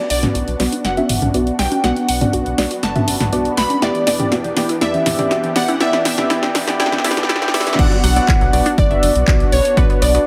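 Driving and bittersweet, this progressive house passage in B minor at 121 BPM moves from Bm to Em7 and back. A velvety sawtooth lead with vibrato carries the melody through chorus and tape echo, joined by a glassy wavetable pluck on a second line, a lush detuned unison pad, and a deep, mellow chord stab coloured by cassette tape and digital delay, all pumping under sidechain. The first 7.8 seconds form a build-up with a drum fill, a very quiet riser and swell, and filter sweeps on both the stab and a crystalline pluck arpeggio carrying vintage 12-bit grit, while a round analog bass, a house kit of crash, handclaps, hi-hat and snare, and tape-warm electronic toms and congas re-recorded in a large room push underneath, until the drop at 7.8 seconds lands with a punchy layered electronic kick inside a moderate hall reverb.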